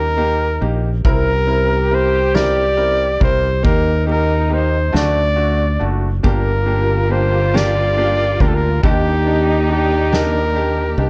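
Dramatic and melancholic, this slow six-eight pop ballad at 46 BPM, cut from a longer piece, sets a clear, up-front flugelhorn melody with vibrato and scooped notes over a mellow, distant French horn section, both touched by slapback echo, while fingered electric bass, a polished concert grand piano, a soft-mallet drum kit with dark cymbals and a fat snare, and from 6.3 seconds a veiled, very quiet con sordino string section move through Eb, C7, D, Gm and Ebmaj7 in a dark, warm studio production.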